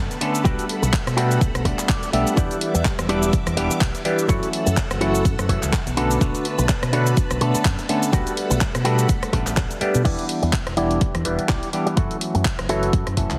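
Heavily compressed with a radio-like sound and light digital reverb, this sensual, nostalgic filtered disco house piece at 125 BPM in E dorian, swung on the sixteenths, rides a punchy, tape-warm electronic kick up front, a layered house kit of hi-hat, handclaps, rim click, shaker and crash cymbal, a round, dark fingered electric bass, a mellow, stringy clav through a combo amp with phaser, and an envelope-filtered guitar riff joined by a clean guitar fill at 1.7 seconds, while a lush, sawtooth string machine with ensemble chorus and 12-bit grit sustains chords in the background until 10.0 seconds, after which a filter sweep runs from 10.1 seconds, with sidechain pumping and low-pass filtering shaping the bass, clav, guitar and strings.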